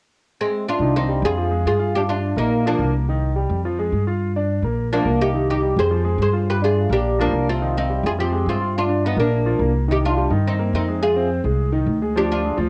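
A mellow, plectrum-plucked oud opens this passionate, danceable Latin excerpt in C minor at a brisk 211 BPM, joined at 0.8 s by a thumpy pizzicato upright bass up front and a clear, intimate grand piano whose action noise and long sustain sit a little further back. The oud's deep, double-strung melody drops out briefly and returns at 4.9 s over a repeating Cm–Fm–G–Bb cycle that later shifts to Cm7, Fm7 and a closing Ddim. The oud and piano carry a cassette tape colour, and the whole home recording sits in a small room with light reverb.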